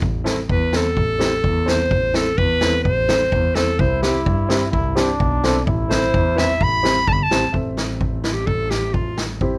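Klezmer in a straight 2/4 with a bittersweet yet festive mood, cut from a longer piece, led by an up-front bright clarinet in classical style soloing over a woody upright piano with long sustain, a focused bowed double bass with vibrato, and a street-band drum kit with boomy kick and rolled-off top, while a clear, jazz-style trombone with vibrato adds a second line from 3.8 to 7.3 seconds, all captured close and detailed with little reverb.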